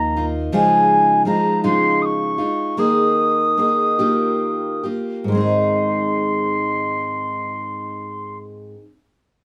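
A mellow wooden flute leads this short, nostalgic acoustic folk piece, its airy, straight-toned melody sitting up front with a soft attack and rolled-off highs. Beneath it, a picked steel-string acoustic guitar carries the accompaniment with a bright, fresh-stringed sound, also close and present, playing until 8.9 seconds. An upright bass sounds only briefly at the very start, a woody, thumpy pizzicato note that ends by 0.5 seconds. The music moves in a slow 6/8 in A-flat major, at roughly 44 to 55 beats per minute, and the tempo slows between 0.5 and 5.3 seconds as suspended and added-note harmonies drift toward a resolution on A-flat at 5.3 seconds. Captured as a small group playing together in one room, the performance carries a moist studio reverb that gives it a gentle, intimate glow, and it reads as a fragment cut from a longer piece.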